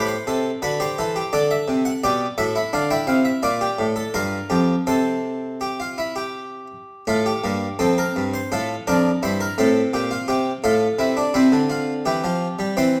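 Set in a moderate recital-hall reverb, this excerpt from a longer piece features a solo Italian-style harpsichord that sits up front, close-miked and dry, with a brilliant, full, plucked tone enriched by its octave strings. The three-part baroque-style fugue in F major moves at a steady 84 BPM in 3/4 with a straight feel and a solemn, serious mood, ranging from F2 to G5 and tuned to A4 = 439 Hz. The opening passage travels through Am, D7, G/B, Dm, Gm and C, and at 7.1 seconds the music settles into F, alternating F/A and C7/G before closing on C at 11.3 seconds.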